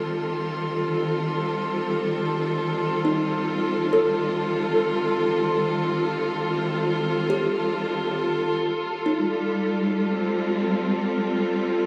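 Serene and luminous, this free-time ambient excerpt in F mixolydian, tuned to A4 = 443 Hz, rests on an F7 chord held by a clear, lush symphonic string section, bowed up front with focused, biting vibrato through a low-pass filter and shimmer reverb. A glassy texture of drifting harmonics hovers in the background with chorus and shimmer until 8.6 seconds, while a woody, hollow kalimba enters at 3.0 seconds with short, bright arpeggios through analog delay and shimmer reverb. A wet plate reverb and studio ambience give the mix an echo-heavy glow.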